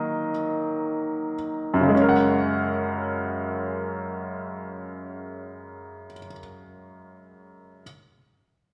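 Romantic and heartfelt, this short pop excerpt is cut from a longer piece and moves in a straight 6/8 at a slow, unhurried pace. A bright upright piano carries the whole passage as accompaniment, playing alone through its first 1.9 seconds while the time slows down before settling into a new section. Its tone is brilliant and woody, placed up front and intimate, with the mechanical action audible beneath the notes. Plate reverb and a slapback echo color the piano, and the performance sounds like a live gig heard through the venue's sound system, set in a reverberant club space that opens toward the air of a recital hall. The harmony moves from a minor chord to a fuller major chord with an added ninth at 1.9 seconds, lending the moment a tender lift.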